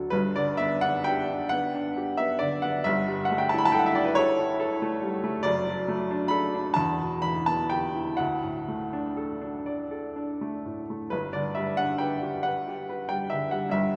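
Classical romantic nocturne for solo upright piano, serene and dreamy, drifting in rubato 6/8 at about 40-47 BPM in G major and slightly under standard pitch, its woody, vintage tone with short sustain sitting up front in a cathedral-like church or hall reverb that lingers for seconds, as this 14-second passage from a longer piece moves through G, A7/G, D/F#, Em and D before settling back on G at 11.1 seconds.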